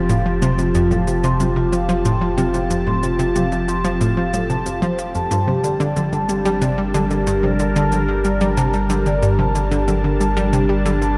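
A phased analog pad, soft-mallet vibraphone, plucked synth riff and round analog bass open this mysterious, hypnotic stretch of ambient, sequencer-driven space music together, with electronic cabasa and toms arriving at 0.1 s. Most prominent is the bright, detuned analog pluck, which repeats a low riff with a fast attack and short decay, thickened by chorus and tape echo. Above it, the vibraphone rings out metallic, mellow arpeggios with a vintage, band-limited tone and its own tape echo, while the swirling, evolving sawtooth pad holds sustained chords through phaser and chorus. The deep, dark bass sits beneath, and the quiet, dry electronic percussion adds a touch of analog colour. The whole mix floats in a vast cathedral reverb as the harmony moves from F to Gmadd9 at 5.3 s, in this short fragment cut from a longer piece.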